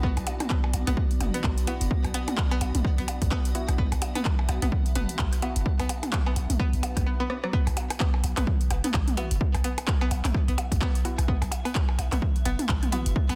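Minimal techno with a cool, sparse mood and a swung 16th-note feel, built on an overdriven, up-front kick and a deep, punchy sine sub bass, both sidechain-pumped. A twangy, string-like resonator pluck with chorus and digital delay carries the riff, while a blurred granular cloud pad and a pulsing, detuned gated texture sit in the background, and an analog drum machine with metallic hats, handclaps and rim clicks joins electronic blips, toms and claves. Muted, filtered dub chord stabs drift in at 1.7 seconds, and a faint electronic swell with a drum fill leads into the drop at 7.5 seconds, all in a dry, dense, heavily limited mix.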